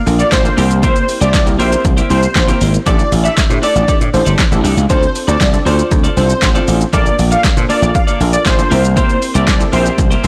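A dry, overdriven analog drum machine with hard-hitting kick, snare, handclaps, hi-hat and shaker kicks off this confident, energetic dance-pop clip alongside an up-front, bright slap bass with sidechain pumping, a twangy twelve-string electric guitar riff bathed in lush chorus, and a funky, detuned polysynth comp with a plucky filter sitting in the background. A smooth, mellow supersaw melody with tape echo joins at 0.2 s over chords moving from Bbmaj7 and C7 to A7sus4 and Dm7. The whole mix sounds blown-out and overdriven, with little reverb, and the clip is cut from a longer piece.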